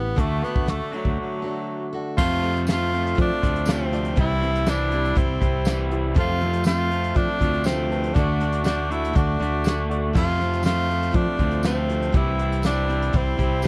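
A warm, nostalgic stretch of folk rock with a heartland lean, cut from a longer piece, moving at 121 BPM in a straight 4/4. A breathy tenor saxophone carries the melody up front, its whispered, soft-attack tone and vibrato giving it an intimate, pop-style solo voice. Beneath it, a fingered electric bass sits direct and forward, a picked jumbo acoustic guitar with fresh strings adds full-bodied support in the background, and an electric guitar through a small old amp plays a twangy, slightly broken-up riff from 0.2 seconds. A soft brush drum kit, dark and smooth with a fat snare and punchy kick, enters at 0.2 seconds, and after a short break the music opens into a new section at 2.2 seconds, where a very quiet grand piano with audible action noise and short sustain slips in, followed at 2.7 seconds by a jingly, distant tambourine. The harmony circles through D, F and C, and the whole is captured as a dry, close 1970s-style studio recording with little reverb.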